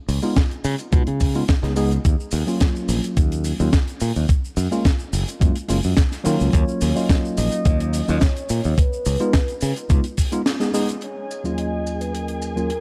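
Nu-disco with a sleek, groovy feel, cut from a longer piece and set in a dark production with light reverb and studio ambience. A thumpy, sampler-style electronic kick sits up front beside a growly, bright fingered electric bass coloured by tube saturation, while a tight funk kit adds dry hi-hat, shaker and a high-tuned snare, with very quiet maracas and group handclaps underneath. A worn, slightly out-of-tune tine electric piano carries the chords through a low-pass filter and digital delay, moving between minor-seventh, dominant and major-seventh harmonies. At 6.5 seconds a soft, round synth lead layered with a sub octave enters with chorus, phaser, vibrato and 12-bit sampler grit. After a band accent at 10.5 seconds, a lush, bowed string section arrives at 11.0 seconds with sidechain pumping, as a filter sweep moves across the electric piano.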